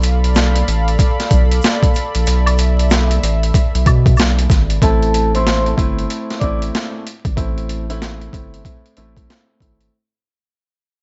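This gritty, tough boom-bap hip-hop excerpt opens on a thumpy, overdriven sampler-style drum kit, pitched down and compressed with a high-tuned snare, over a deep, saturated sine sub bass that sits up front with it. A smooth, nasal sawtooth pad with chorus holds sustained chords behind them, while a close, dry tube shaker and woodblock with group handclaps ticks along in the background. At 4.8 seconds the pad and shaker drop away, and the piece moves into its second part as it begins to fade out. A metallic, ringing vibraphone played with soft mallets carries a brief, mid-forward melody with slow motor vibrato and digital delay until 6.6 seconds. A dark grand piano with long sustain and a cassette-tape colour accompanies it, while vinyl crackle and small room ambience give the whole track a dusty, lo-fi haze.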